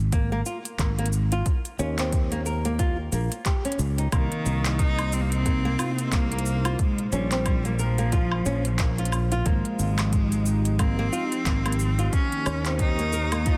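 A swung sixteenth-note groove at a relaxed downtempo pace drives this hypnotic, warm organic downtempo clip, anchored by a punchy, layered electronic kick and a crisp, tape-tinged electronic kit of hi-hat, cabasa, handclaps and woodblock, both carrying a small-room character. A growly, bright fretless electric bass sits up front from the opening moment, sustaining low notes beneath a fingerpicked flamenco guitar whose arpeggios carry audible finger squeak and trail through a digital delay. At 4.1 seconds a close, focused solo cello enters with a bowed melody full of vibrato, also touched by digital delay. At the same point a smooth, detuned sawtooth pad enters in the background with a soft attack and long release, its chords treated with chorus and sidechain pumping. The harmony moves through suspended, seventh and added-ninth colours under light reverb and digital ambience, and the dense, heavily limited modern master keeps the whole cut thick and forward.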